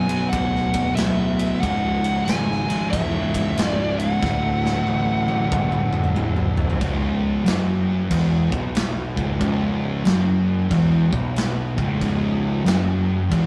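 Brooding and sludgy, this stoner and doom metal excerpt trudges at 92 BPM in 4/4 with a swung eighth-note feel, rooted in C# Phrygian. Two dark, picked fuzz guitars carry the riff throughout, one up front and the other tucked behind it, while a growly, bright overdriven picked bass punches underneath. A compressed fuzz lead guitar sings a distorted melody over the opening before falling away at 6.1 seconds. A very quiet, fat tonewheel organ holds sustained chords with key click, chorus vibrato and a slow rotary speaker, drops out, then returns at 12.0 seconds. The big acoustic rock kit, with its punchy kick, medium-tuned snare, ride, crashes and toms, rolls through a fill from 4.2 seconds, all set in a moderate stone-room reverb with the rough, raw sound of a rehearsal-room recording.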